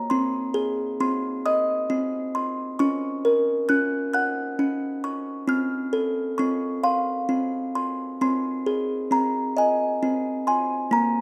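A lone music box opens this dreamy, wistful lullaby excerpt in a slow 6/8 at 44 dotted-quarter beats per minute, its delicate, tinkling plucked tones spanning Bb3 to Gb6 across the full 11.2 seconds. The large box is close-miked, dry and up front with a full body, set in light reverb as it drifts through Ab, Gb and F before settling back on Ab at 8.2 seconds. The clip is cut from a longer children's piece.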